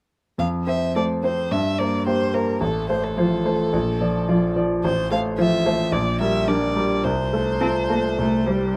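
A quick classical-period movement for piano quartet, this short excerpt from a longer piece is lively and spirited, moving in 4/4 with a flexible, rubato feel and tuned to A4 = 437 Hz. A single violin, up front and rich in tone, carries the melody from 0.4 seconds, its bowed line focused and sung with vibrato and a smooth top. The bright grand piano enters at the same moment with a brilliant, natural-sounding accompaniment that spans from deep bass to the upper middle of the keyboard. At 1.0 seconds a solo cello joins in the background with a clear, bowed second line, also played with vibrato. The harmony moves through F, C5/G, F/A, Bb, F/A, Gm/Bb and F/C before settling on C5. Moderate studio reverb lends a sense of space, and the production as a whole leans dark and warm.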